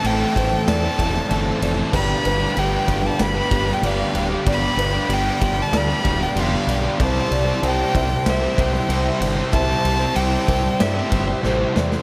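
A bright, intense solo violin sings up front from the first moment, its close, airy bow and vibrato carried on a diffuse ambient delay over a brooding, cinematic post-rock groove at 95 BPM in a straight 4/4. Beneath it, a growling fingered electric bass sits up front with an overdriven, punchy tone, while a big rock drum kit drives the music with a punchy kick, medium-tuned snare, and bright crash and ride cymbals in a natural, roomy sound. Two dark, overdriven guitars play riffs in the background: one a picked semi-hollow body with a hollow character, the other sludgy and distorted. A felt-muted upright piano adds soft, intimate arpeggios with audible action noise, thickened by analog chorus and ambient delay, and a very quiet chamber string section holds earthy, smooth sustained chords. The harmony moves from A minor to G7 and settles on C at 7.0 seconds; the violin drops out at 11.4 seconds as a drum fill closes the passage. 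The whole mix is soaked in a huge, dreamy reverb with a long 7.3-second tail, and the section is cut from a longer piece.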